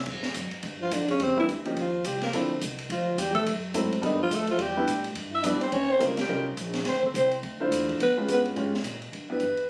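Warm and swinging, this short excerpt cut from a longer piece catches a small jazz group in the swing and bop tradition at a brisk 212 BPM in 4/4, with a lilting swung eighth-note feel. A growling alto saxophone carries the melody up front, its raspy, gritty tone colored by vibrato, subtone and a touch of plate reverb. Beneath it, a breathy trombone enters at 0.8 seconds as a second line, mellow and distant with a soft attack and a whispered, intimate quality. A clear upright piano with a vintage, long-sustaining sound joins at 1.4 seconds to comp through shifting harmonies such as Em7b5, B7alt and Db7#11, while a woody pizzicato upright bass on gut strings gives a dark, thumpy foundation. The open acoustic drum kit, with dark cymbals, a high-tuned snare and a boomy kick, drives the groove, and the band hits a shared accent at 6.2 seconds, all heard with a light reverb and the feel of a phone capture in the room.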